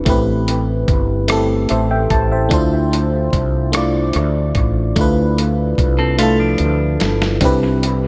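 Slow six-eight R&B at 49 BPM in D dorian with a yearning, late-night mood, this echo-heavy excerpt sets a glassy, bell-like FM electric piano with chorus and dub echo over a round, dark fretless bass and a dusty, gritty sampler-style drum kit with a thumpy kick and dub echo, moving through Am9, Dm9 and Cmaj7, while a bright, twangy clean electric guitar with spring reverb adds a second line from 6.0 s as the drums play a fill at 6.2 s.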